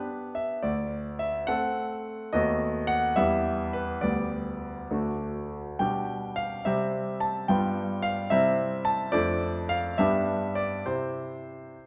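A clear, polished concert grand piano plays this elegant, playful classical-period sonatina alone in a rubato 6/8, its deep bass and short sustain sitting up front in a moderate recital hall reverb as the harmony moves from G through E minor and settles into C major from 5.8 s in this brief cut from a longer piece.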